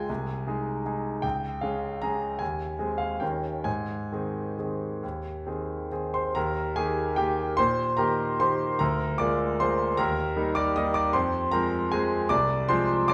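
A lilting waltz in 3/4 sways with generous rubato, its pulse stretching and gathering anywhere between 128 and 163 BPM. This classical piano miniature feels playful and elegant, cut from a longer piece and played by a concert grand heard alone from 0.0 to 13.1 s. The opening phrase sits in Ab major, touching Db and a dominant Eb7 before settling home, and at 6.4 s the music turns toward Eb major, passing through Bb7/D and closing on an Fm chord. The piano sounds clear, polished and up front, with a deep bass that reaches down to C2 while the top climbs to Eb6, and the audible action noise of the instrument adds an intimate closeness. Around it, a wet recital hall reverb with a 1.5 s decay lends the phrases a graceful halo.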